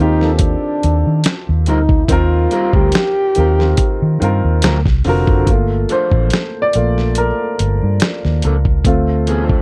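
A slow 71 BPM groove in 4/4 with a light 16th-note swing anchors this sultry, introspective R&B and neo-soul fragment in G minor, cut from a longer piece. A gritty, compressed sampler-style drum kit with a thumpy kick and medium-tuned snare sits up front, alongside a dark, round, foam-muted fingered electric bass that sounds amped and punchy. A clear French horn carries the melody in a classical style with vibrato until 4.4 seconds, over an intimate grand piano whose action noise is audible. From 1.7 seconds a bright, twangy electric guitar through a small old amp adds a picked, slightly broken-up second line. The piano takes a solo from 5.5 seconds as the harmony moves from Eb69 and D7alt to Gm9 and Dm7, all captured in a dry, close 1970s-style studio sound with little reverb.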